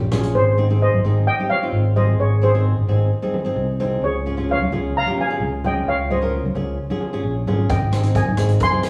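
A straight 4/4 calypso groove at 131 BPM in Ab major sets a bouncy, sunny mood, built on a round, punchy fingered electric bass up front, fingerpicked flamenco guitar on fresh strings, and ringing congas in the background, while a street-band drum kit with a boomy kick sounds briefly at the start and returns at 7.7 s, and a mellow, shimmering steel pan played with soft rubber sticks carries the melody from 0.4 s over chords moving from Ab to Dbmaj7 and Abmaj7, all set in a wet stone room in this brief excerpt cut from a longer piece.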